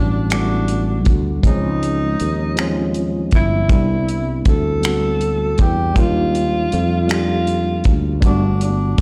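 Tender and sensual, this slow R&B groove in 6/8 moves at 53 BPM through lush Gmaj9, Dbmaj9, Cmaj9 and Ebmaj9 chords, cut from a longer piece. A breathy, whispered tenor saxophone carries the jazz-style melody with mellow vibrato and a soft attack, sounding distant and roomy, while a worn, slightly out-of-tune tine electric piano with light overdrive plays accompaniment beneath it and a growly, sustaining fretless electric bass sits up front. From 0.3 seconds a damped, dry 70s drum kit adds finger snaps, hi-hat and a tight kick with a rolled-off top, and the whole mix is heard played on a big sound system in a bare stone room.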